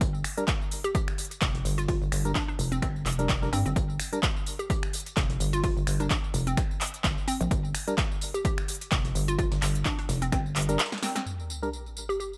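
A gritty, up-front bass house cut with little reverb swaggers at 128 BPM in G minor, with a 56% swing on the 16ths, as an overdriven punchy kick and a big-room kit of crisp hats, snaps, handclaps, tambourine and a punchy snare drive alongside a very quiet, dusty sampler-style kit of hi-hat, snare and tambourine. A metallic, saturated wobble bass pumps against the kick while a hollow, bouncy square pluck carries the melody with 12-bit sampler grit and delay, and a dark, organ-like stab entering at 0.4 seconds adds cassette-tinged chorus and its own sidechain pumping. A drum fill at 10.9 seconds leads into a sub drop impact at 11.3 seconds, landing on G minor as this excerpt from a longer piece closes.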